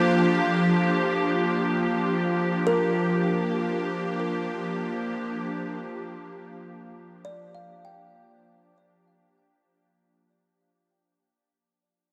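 Bathed in a huge, wet reverb, this luminous, serene ambient fragment, cut from a longer piece, rests on a single Gm7/F chord and fades out across its 9.8 seconds. Up front, a bright, morphing wavetable pad holds sustained chords with ensemble chorus, while beneath it a tense, string-like bowed drone with vibrato and ring modulation sustains until 9.9 seconds. Softly in the background, a woody, mellow kalimba rings out delayed arpeggios, carrying on to 10.8 seconds.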